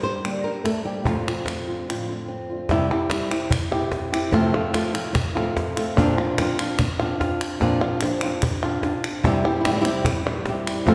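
Flamenco at 147 BPM, proud and fiery in a straight 4/4, cut from a longer piece: an up-front fingerpicked flamenco guitar carries the melody over a second guitar's stabs with audible finger squeak, which drops out at 2.7 seconds after a brief break and returns at 9.2 seconds, while crisp, close palmas hand claps and a snappy cajon with snares played with soft hands drive the pulse, all set in a resonant hall with a reverb tail of about 1.8 seconds, as chords move from Gm and F6 through C, F and a rootless Bbadd9 back to C.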